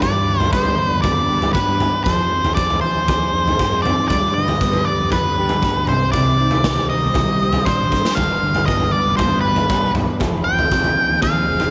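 Psychedelic rock in G phrygian dominant at 118 BPM, this dark, mysterious fragment features an up-front octave-fuzz lead guitar carrying a picked, distorted melody soaked in tape echo. Below it, a raw garage drum kit drives with a punchy kick and a gritty, saturated sound in a bright stone room, while a mellow, clean electric guitar plays a phaser-tinged, double-tracked riff and an overdriven fingered bass adds fuzz from the background. A very quiet, lush bowed string section holds smooth vibrato chords over a G, Fm7 and Cmadd9 progression, and the drums break into a fill at 7.7 seconds within a dim, studio-reverbed sound.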